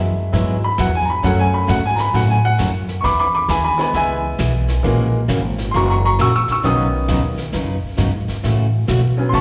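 Western swing country at 133 BPM in E major, swinging and playful, with a bright, brilliant upright piano taking a solo from the start to 9.4 seconds over a thumpy, woody pizzicato upright bass that sits up front. A picked dreadnought acoustic guitar with fresh strings joins at 0.3 seconds alongside a dark, smooth vintage brush kit of snare and hi-hat, with slapback echo on both the piano and guitar. The chords move through Eadd9, F#m, E, F#7, Badd9 and A6, and the whole excerpt sounds like a live gig heard through a venue's PA, carrying light recital-hall reverb.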